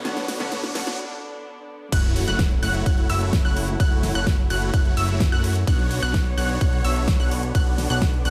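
Set in light reverb with a digital ambience and a high-pass filter, this emotional, euphoric festival progressive house passage opens on a build-up, where a dark, very quiet clean electric guitar sounds only until 0.8 seconds and a big-room dance drum kit with a huge snare, crash, hi-hat and ride plays a fill beneath a background riser. Bright, detuned supersaw chords carry the riff through phaser and delay, over a fat, evolving analog bass and an intimate chamber string section with light vibrato, all three pumping with the sidechain. At 1.9 seconds the drop lands with an impact, a punchy, up-front electronic kick and a lush, high unison pluck arpeggio that also pumps and trails delay.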